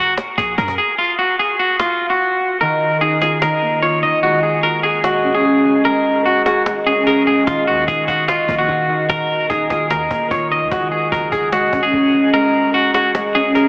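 Hip hop and trap in a menacing, hard-hitting half-time feel, this passage cut from a longer piece is led by an up-front twangy, compressed electric guitar melody through a low-pass filter and analog delay, joined at 2.6 s by a ringing, fingerpicked concert harp, with a snappy, dry cajon and a deep, boomy 808-style bass sitting in the background, the bass dropping in briefly at the start and again from 7.5 s, inside a dreamy, reverb-soaked mix with an AM radio sound.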